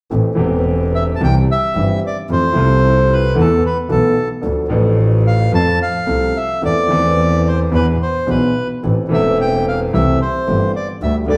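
A woody, up-front upright piano and a bowed double bass with a biting, earthy tone and light vibrato open this sultry, dramatic tango together at 0.1 s, moving through minor-key harmony with a rubato feel. At 0.9 s a reedy bandoneon enters up front to carry the melody, its sound boxy as if from a small room, while a large studio reverb lends the recording a sense of distance. The passage is cut from a longer piece.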